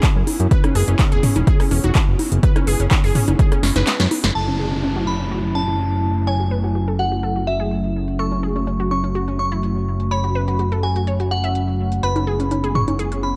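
A straight 4/4 pulse drives this emotional, bittersweet progressive house excerpt, where a punchy, up-front electronic kick drops away at 3.5 s beneath a big-room kit of crisp hats, snare, handclaps and rim clicks, while tape-warm electronic congas and toms add percussion, a fat, saturated analog bass pumps under an airy, breathy chorused pad, and a lush, bright unison pluck arpeggiates with dub echo and cassette grit before a glassy, crystalline FM bell melody and a downlifter arrive at 4.4 s in a dark production with light reverb.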